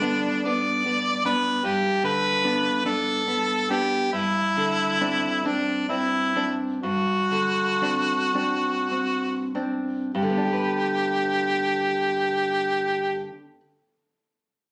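A clear, punchy harmonica carries the melody up front in a classical style, its vibrato giving each held note a gentle shimmer as it moves between D4 and D5. This serene, romantic duo in G major sits in a slow, rubato 12/8, somewhere around 31 to 52 BPM counted in dotted quarters, and it gradually slows through most of its opening section. Beneath it, a dark, full-bodied nylon-string guitar is fingerpicked in a deep classical manner, spanning from G2 to B4 with the occasional audible finger squeak. The harmony rests on G, shifts to D7 over a G bass at 4.1 seconds, and returns to G as a new section begins at 10.1 seconds. The sound has the intimate quality of a phone recording in a room, softened by light reverb, and this fragment of a longer piece ends shortly after the harmonica's last note at 13.2 seconds.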